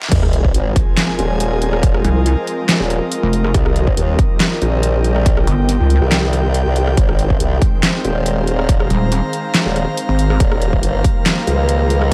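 A heavy, detuned pulsing pluck wobble bass with saturated, chorused grit stands out in this chaotic, aggressive half-time dubstep drop, bursting in at 2.0 s and again near 8.9 s over a constant formant-sweep wobble bass that growls up front with overdrive. A punchy, overdriven electronic kick and a layered dubstep drum kit with a deep snare, handclaps, hi-hat, rim click and crash slam forward, while a very quiet sub drop marks the opening impact. Behind them, huge, lush supersaw chords pump under a low-pass filter and an airy, breathy pad glimmers on top, all set in a dark production with light reverb, cut from a longer piece.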